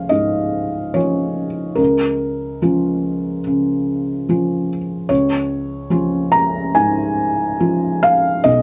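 Rubato phrasing loosely follows a 72 BPM pulse in 4/4 in this short, peaceful fragment of neoclassical minimalist piano in Db major, tuned to A4 = 439 Hz. A felt-muted upright piano plays solo from Cb2 to Bb5, moving from Db to Bbm/Db at 1.8 seconds and back to Db at 5.1 seconds. Its thick felt gives a dark, mellow, intimate tone with audible action noise, and the piano sits up front in a small room with moderate reverb.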